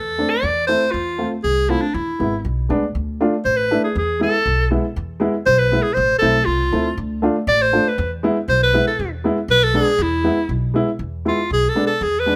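A moderate studio reverb frames this bittersweet, festive klezmer excerpt in 2/4, where a bright, punchy, close-miked clarinet with vibrato and scooped notes leads up front in a forceful, jazz-style manner through plate reverb, a woody upright piano with short sustain plays accompaniment, and a thumpy pizzicato upright bass on steel strings carries the bass line, with the clarinet taking a solo from 11.0 seconds.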